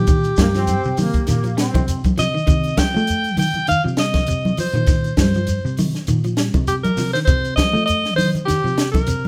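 A live band in a moderate stone room plays an intense, funky afrobeat excerpt at 100 BPM in C dorian over a Cm7 chord, with a clear, punchy alto saxophone melody up front, dark, slightly broken-up electric guitar arpeggios, a round hollow-body fingered electric bass, a dry compact cocktail drum kit with a high-tuned snare, bright damped congas and a grainy shekere in the background, and a warm trombone section adding a brief second line from 0.4 to 2.0 seconds.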